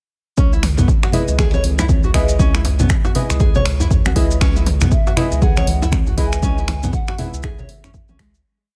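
A bright, fingerpicked nylon-string guitar repeats a 16-step arpeggio, pumping against the beat, over a punchy, up-front four-on-the-floor kick in this earthy afro house piece with a gentle swing. A round, dark analog bass plays a dotted rhythm beneath soft, chorused chord stabs, while snaps, open hats and toms from a deep house kit mix with background congas, a rattling djembe and grainy maracas in a small room. At 4.9 seconds a breathy, hollow pan flute floats in with distant vibrato hook phrases, shortly before the full groove fades out from 5.8 seconds.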